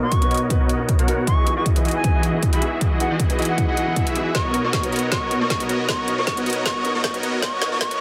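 Lush and bright, this short future bass build-up in B major at 156 BPM, with a half-time, lightly swung feel, sets huge, detuned supersaw chords with a low-pass filter sweep over a dark, mellow grand piano carrying dub echo and an airy, reedy flute melody with tape echo, all three pumping to the sidechain above a punchy, up-front electronic kick and a trap kit of woody snare and metallic hats, the drums breaking into a fill at 4.3 seconds as Bmaj7 and Emaj7 give way to Bmaj9, all bathed in a lush hall reverb.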